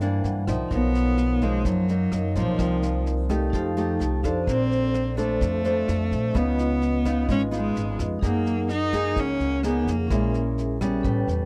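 Bossa nova at 128 BPM in a breezy, sunny mood, cut from a longer piece and settling into F# major at 8.2 seconds, with a bowed cello carrying the melody from 0.7 seconds, its rich, focused tone and vibrato sitting up front. Underneath, a fingerpicked classical nylon-string guitar and a ringing, metallic vibraphone struck with medium hard mallets supply the harmony, with the vibraphone adding short fills, while a woody, growly pizzicato upright bass with steel strings sits forward and a vintage brush kit with a tight kick, rim click and medium-tuned snare keeps a warm, rolled-off pulse. The chords drift through lush extended colours like C9, Bmaj9#11 and F#69 in a dry, close 1970s-style studio sound touched with light reverb.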